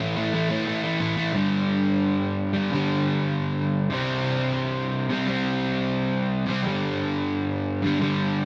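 A straight 4/4 pulse at 176 BPM drives this raw, urgent punk fragment, cut from a longer piece, which drops into a half-time feel from 1.4 seconds through to the end at 8.4 seconds. A lone electric guitar carries the whole passage, crunchy and overdriven, picked and double-tracked so it sits thick and up front with a warm edge. It moves through power chords, opening on A5, shifting to G5 at 1.4 seconds, then C5 and back to G5, in a range from G2 to C4. A moderate studio reverb gives the guitar a sense of a band playing live together in one room. The tuning sits at A4 = 439 Hz.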